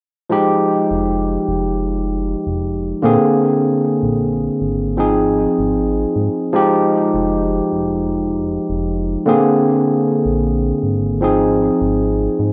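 In a straight 4/4 feel, this nostalgic, woozy vaporwave clip opens at 0.3 seconds with an overdriven tine electric piano, barky and gritty through a combo amp and sitting up front, its chords tinged by subtle chorus, vintage 12-bit sampler grit and analog delay. A glossy, retro chorused synth bass joins at 0.9 seconds, mellow beneath it with a filter pluck on a fast attack. Fm9, Bb9 and Ab6 cycle twice in a rough home demo mix with moderate studio ambience.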